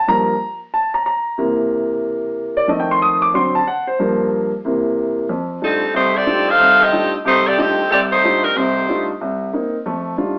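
A live-in-one-room jazz cut with an AM radio sound and a wet studio reverb opens on a warm, polished grand piano alone over Gm7 to C7 changes, then a clear saxophone section with light vibrato and soft attack carries the brassy, swinging melody in F major from 5.6 to 9.1 seconds at a brisk 184 BPM.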